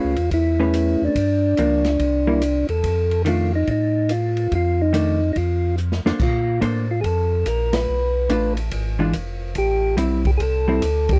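Swinging and soulful, this short cut from a longer soul jazz organ trio piece moves at 143 BPM in 4/4 with a 65% swing on the eighth notes. A percussive tonewheel organ carries the melody from the start, its mellow, round tone sharpened by third-harmonic percussion and turned by a slow rotary speaker. Beneath it, a second tonewheel organ plays the bass line, piping and scooped with key click and chorus vibrato through a stopped rotary speaker. A dark, compressed hollow-body electric guitar supplies picked accompaniment until 10.8 seconds. An acoustic drum kit enters at 0.2 seconds with dark cymbals, a medium-tuned snare and a boomy kick, and its fill at 5.8 seconds leads into a new section over a Bbmaj9 chord, where the band hits accents at 7.7 and 11.0 seconds. The sound is dry and close in the manner of a 1970s studio, touched by light reverb, with the organs and guitar placed up front and the drums in a small room.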